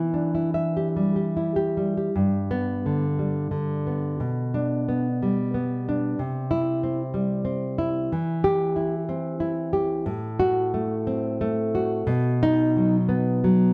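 Melancholic and passionate, this romantic excerpt for solo classical guitar moves in an uneven, rubato three-beat lilt, its dark, full-bodied nylon-string guitar sitting up front with thumb-plucked depth, a slapback echo and a moderate plate reverb, as the harmony drifts from E minor through G, C and a diminished chord before arriving on B at 12.1 seconds.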